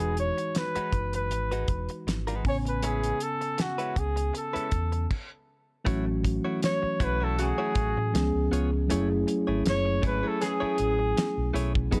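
A smooth, romantic slice of lush 1970s-style soul opens at once with a flugelhorn carrying the melody, its pop-style phrasing marked by scooped notes and a distant, roomy tone even as it sits up front. Beneath it, a mellow tine electric piano plays the accompaniment through its built-in speakers, a direct-recorded clean electric guitar picks out a compressed, dark riff, and a fingered electric bass adds a round, amped low end. The damped 70s drum kit is dry and up front, with a fat snare, tight kick, hi-hat and dark-toned crash cymbal, moving at 79 BPM in 4/4 with a gentle swing on the sixteenths. Chords drift from Emaj9 to Amaj9 before a brief stop at 5.1 seconds, after which the harmony shifts through A6, C#7 and F#m9. In this later stretch a horn section joins in the background at 7.4 seconds with smooth-topped stabs and light vibrato, while the flugelhorn bows out at 11.5 seconds, all within a small room ambience in this fragment cut from a longer piece.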